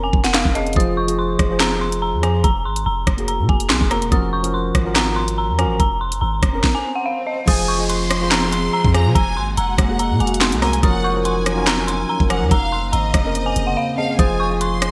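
Cold and menacing, this half-time drill hip hop excerpt opens with an eerie, inharmonic synth bell melody drenched in chorus and delay, floating over a worn, slightly out-of-tune tine electric piano and a deep, mellow 808-style bass whose long sine notes decay. An overdriven drill kit sits up front with a knocking kick, sharp snare, hi-hats, rim clicks, handclaps and crash under gated reverb. A background swell and downlifter arrive at 6.4 seconds, the swell leading into the second half at 7.5 seconds, where a smooth bowed violin section with vibrato joins. A moment later, a moody, wave-folded analog pad enters beneath it. The bright 1980s-style digital production wraps the parts in a lush hall reverb, and a brief silent gap at 13.8 seconds breaks the beat before the last chord.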